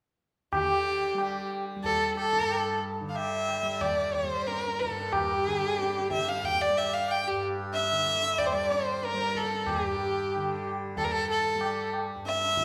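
In a straight 7/4 at 92 BPM that speeds up over this meditative, longing Hindustani classical excerpt in G raga kafi, a rich, focused bowed violin sings the melody with vibrato up front, a buzzing, shimmering tanpura holds the drone, low-tuned ringing tabla sounds distant, and a reedy, very quiet pedal harmonium enters at 0.7 s with a second line, all bathed in the reverb of a recital hall.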